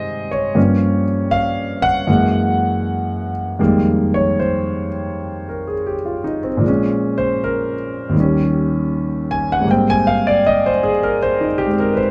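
Light reverb surrounds an intimate, up-front concert grand piano, close enough that the soft clatter of its action can be heard beneath the notes. This is a short cut from a longer solo jazz piece, late-night and cool in mood, with the piano carrying everything on its own in a relaxed swing. Its range stretches from a deep bass up into the upper register, giving the natural tone real weight at the bottom. The opening bars move through major-seventh and half-diminished colours before settling on a minor eleventh chord at 3.6 seconds. From there the piano takes a solo turn that runs to the close at 12.1 seconds, drifting through minor and dominant harmonies toward a lush major-ninth resolution.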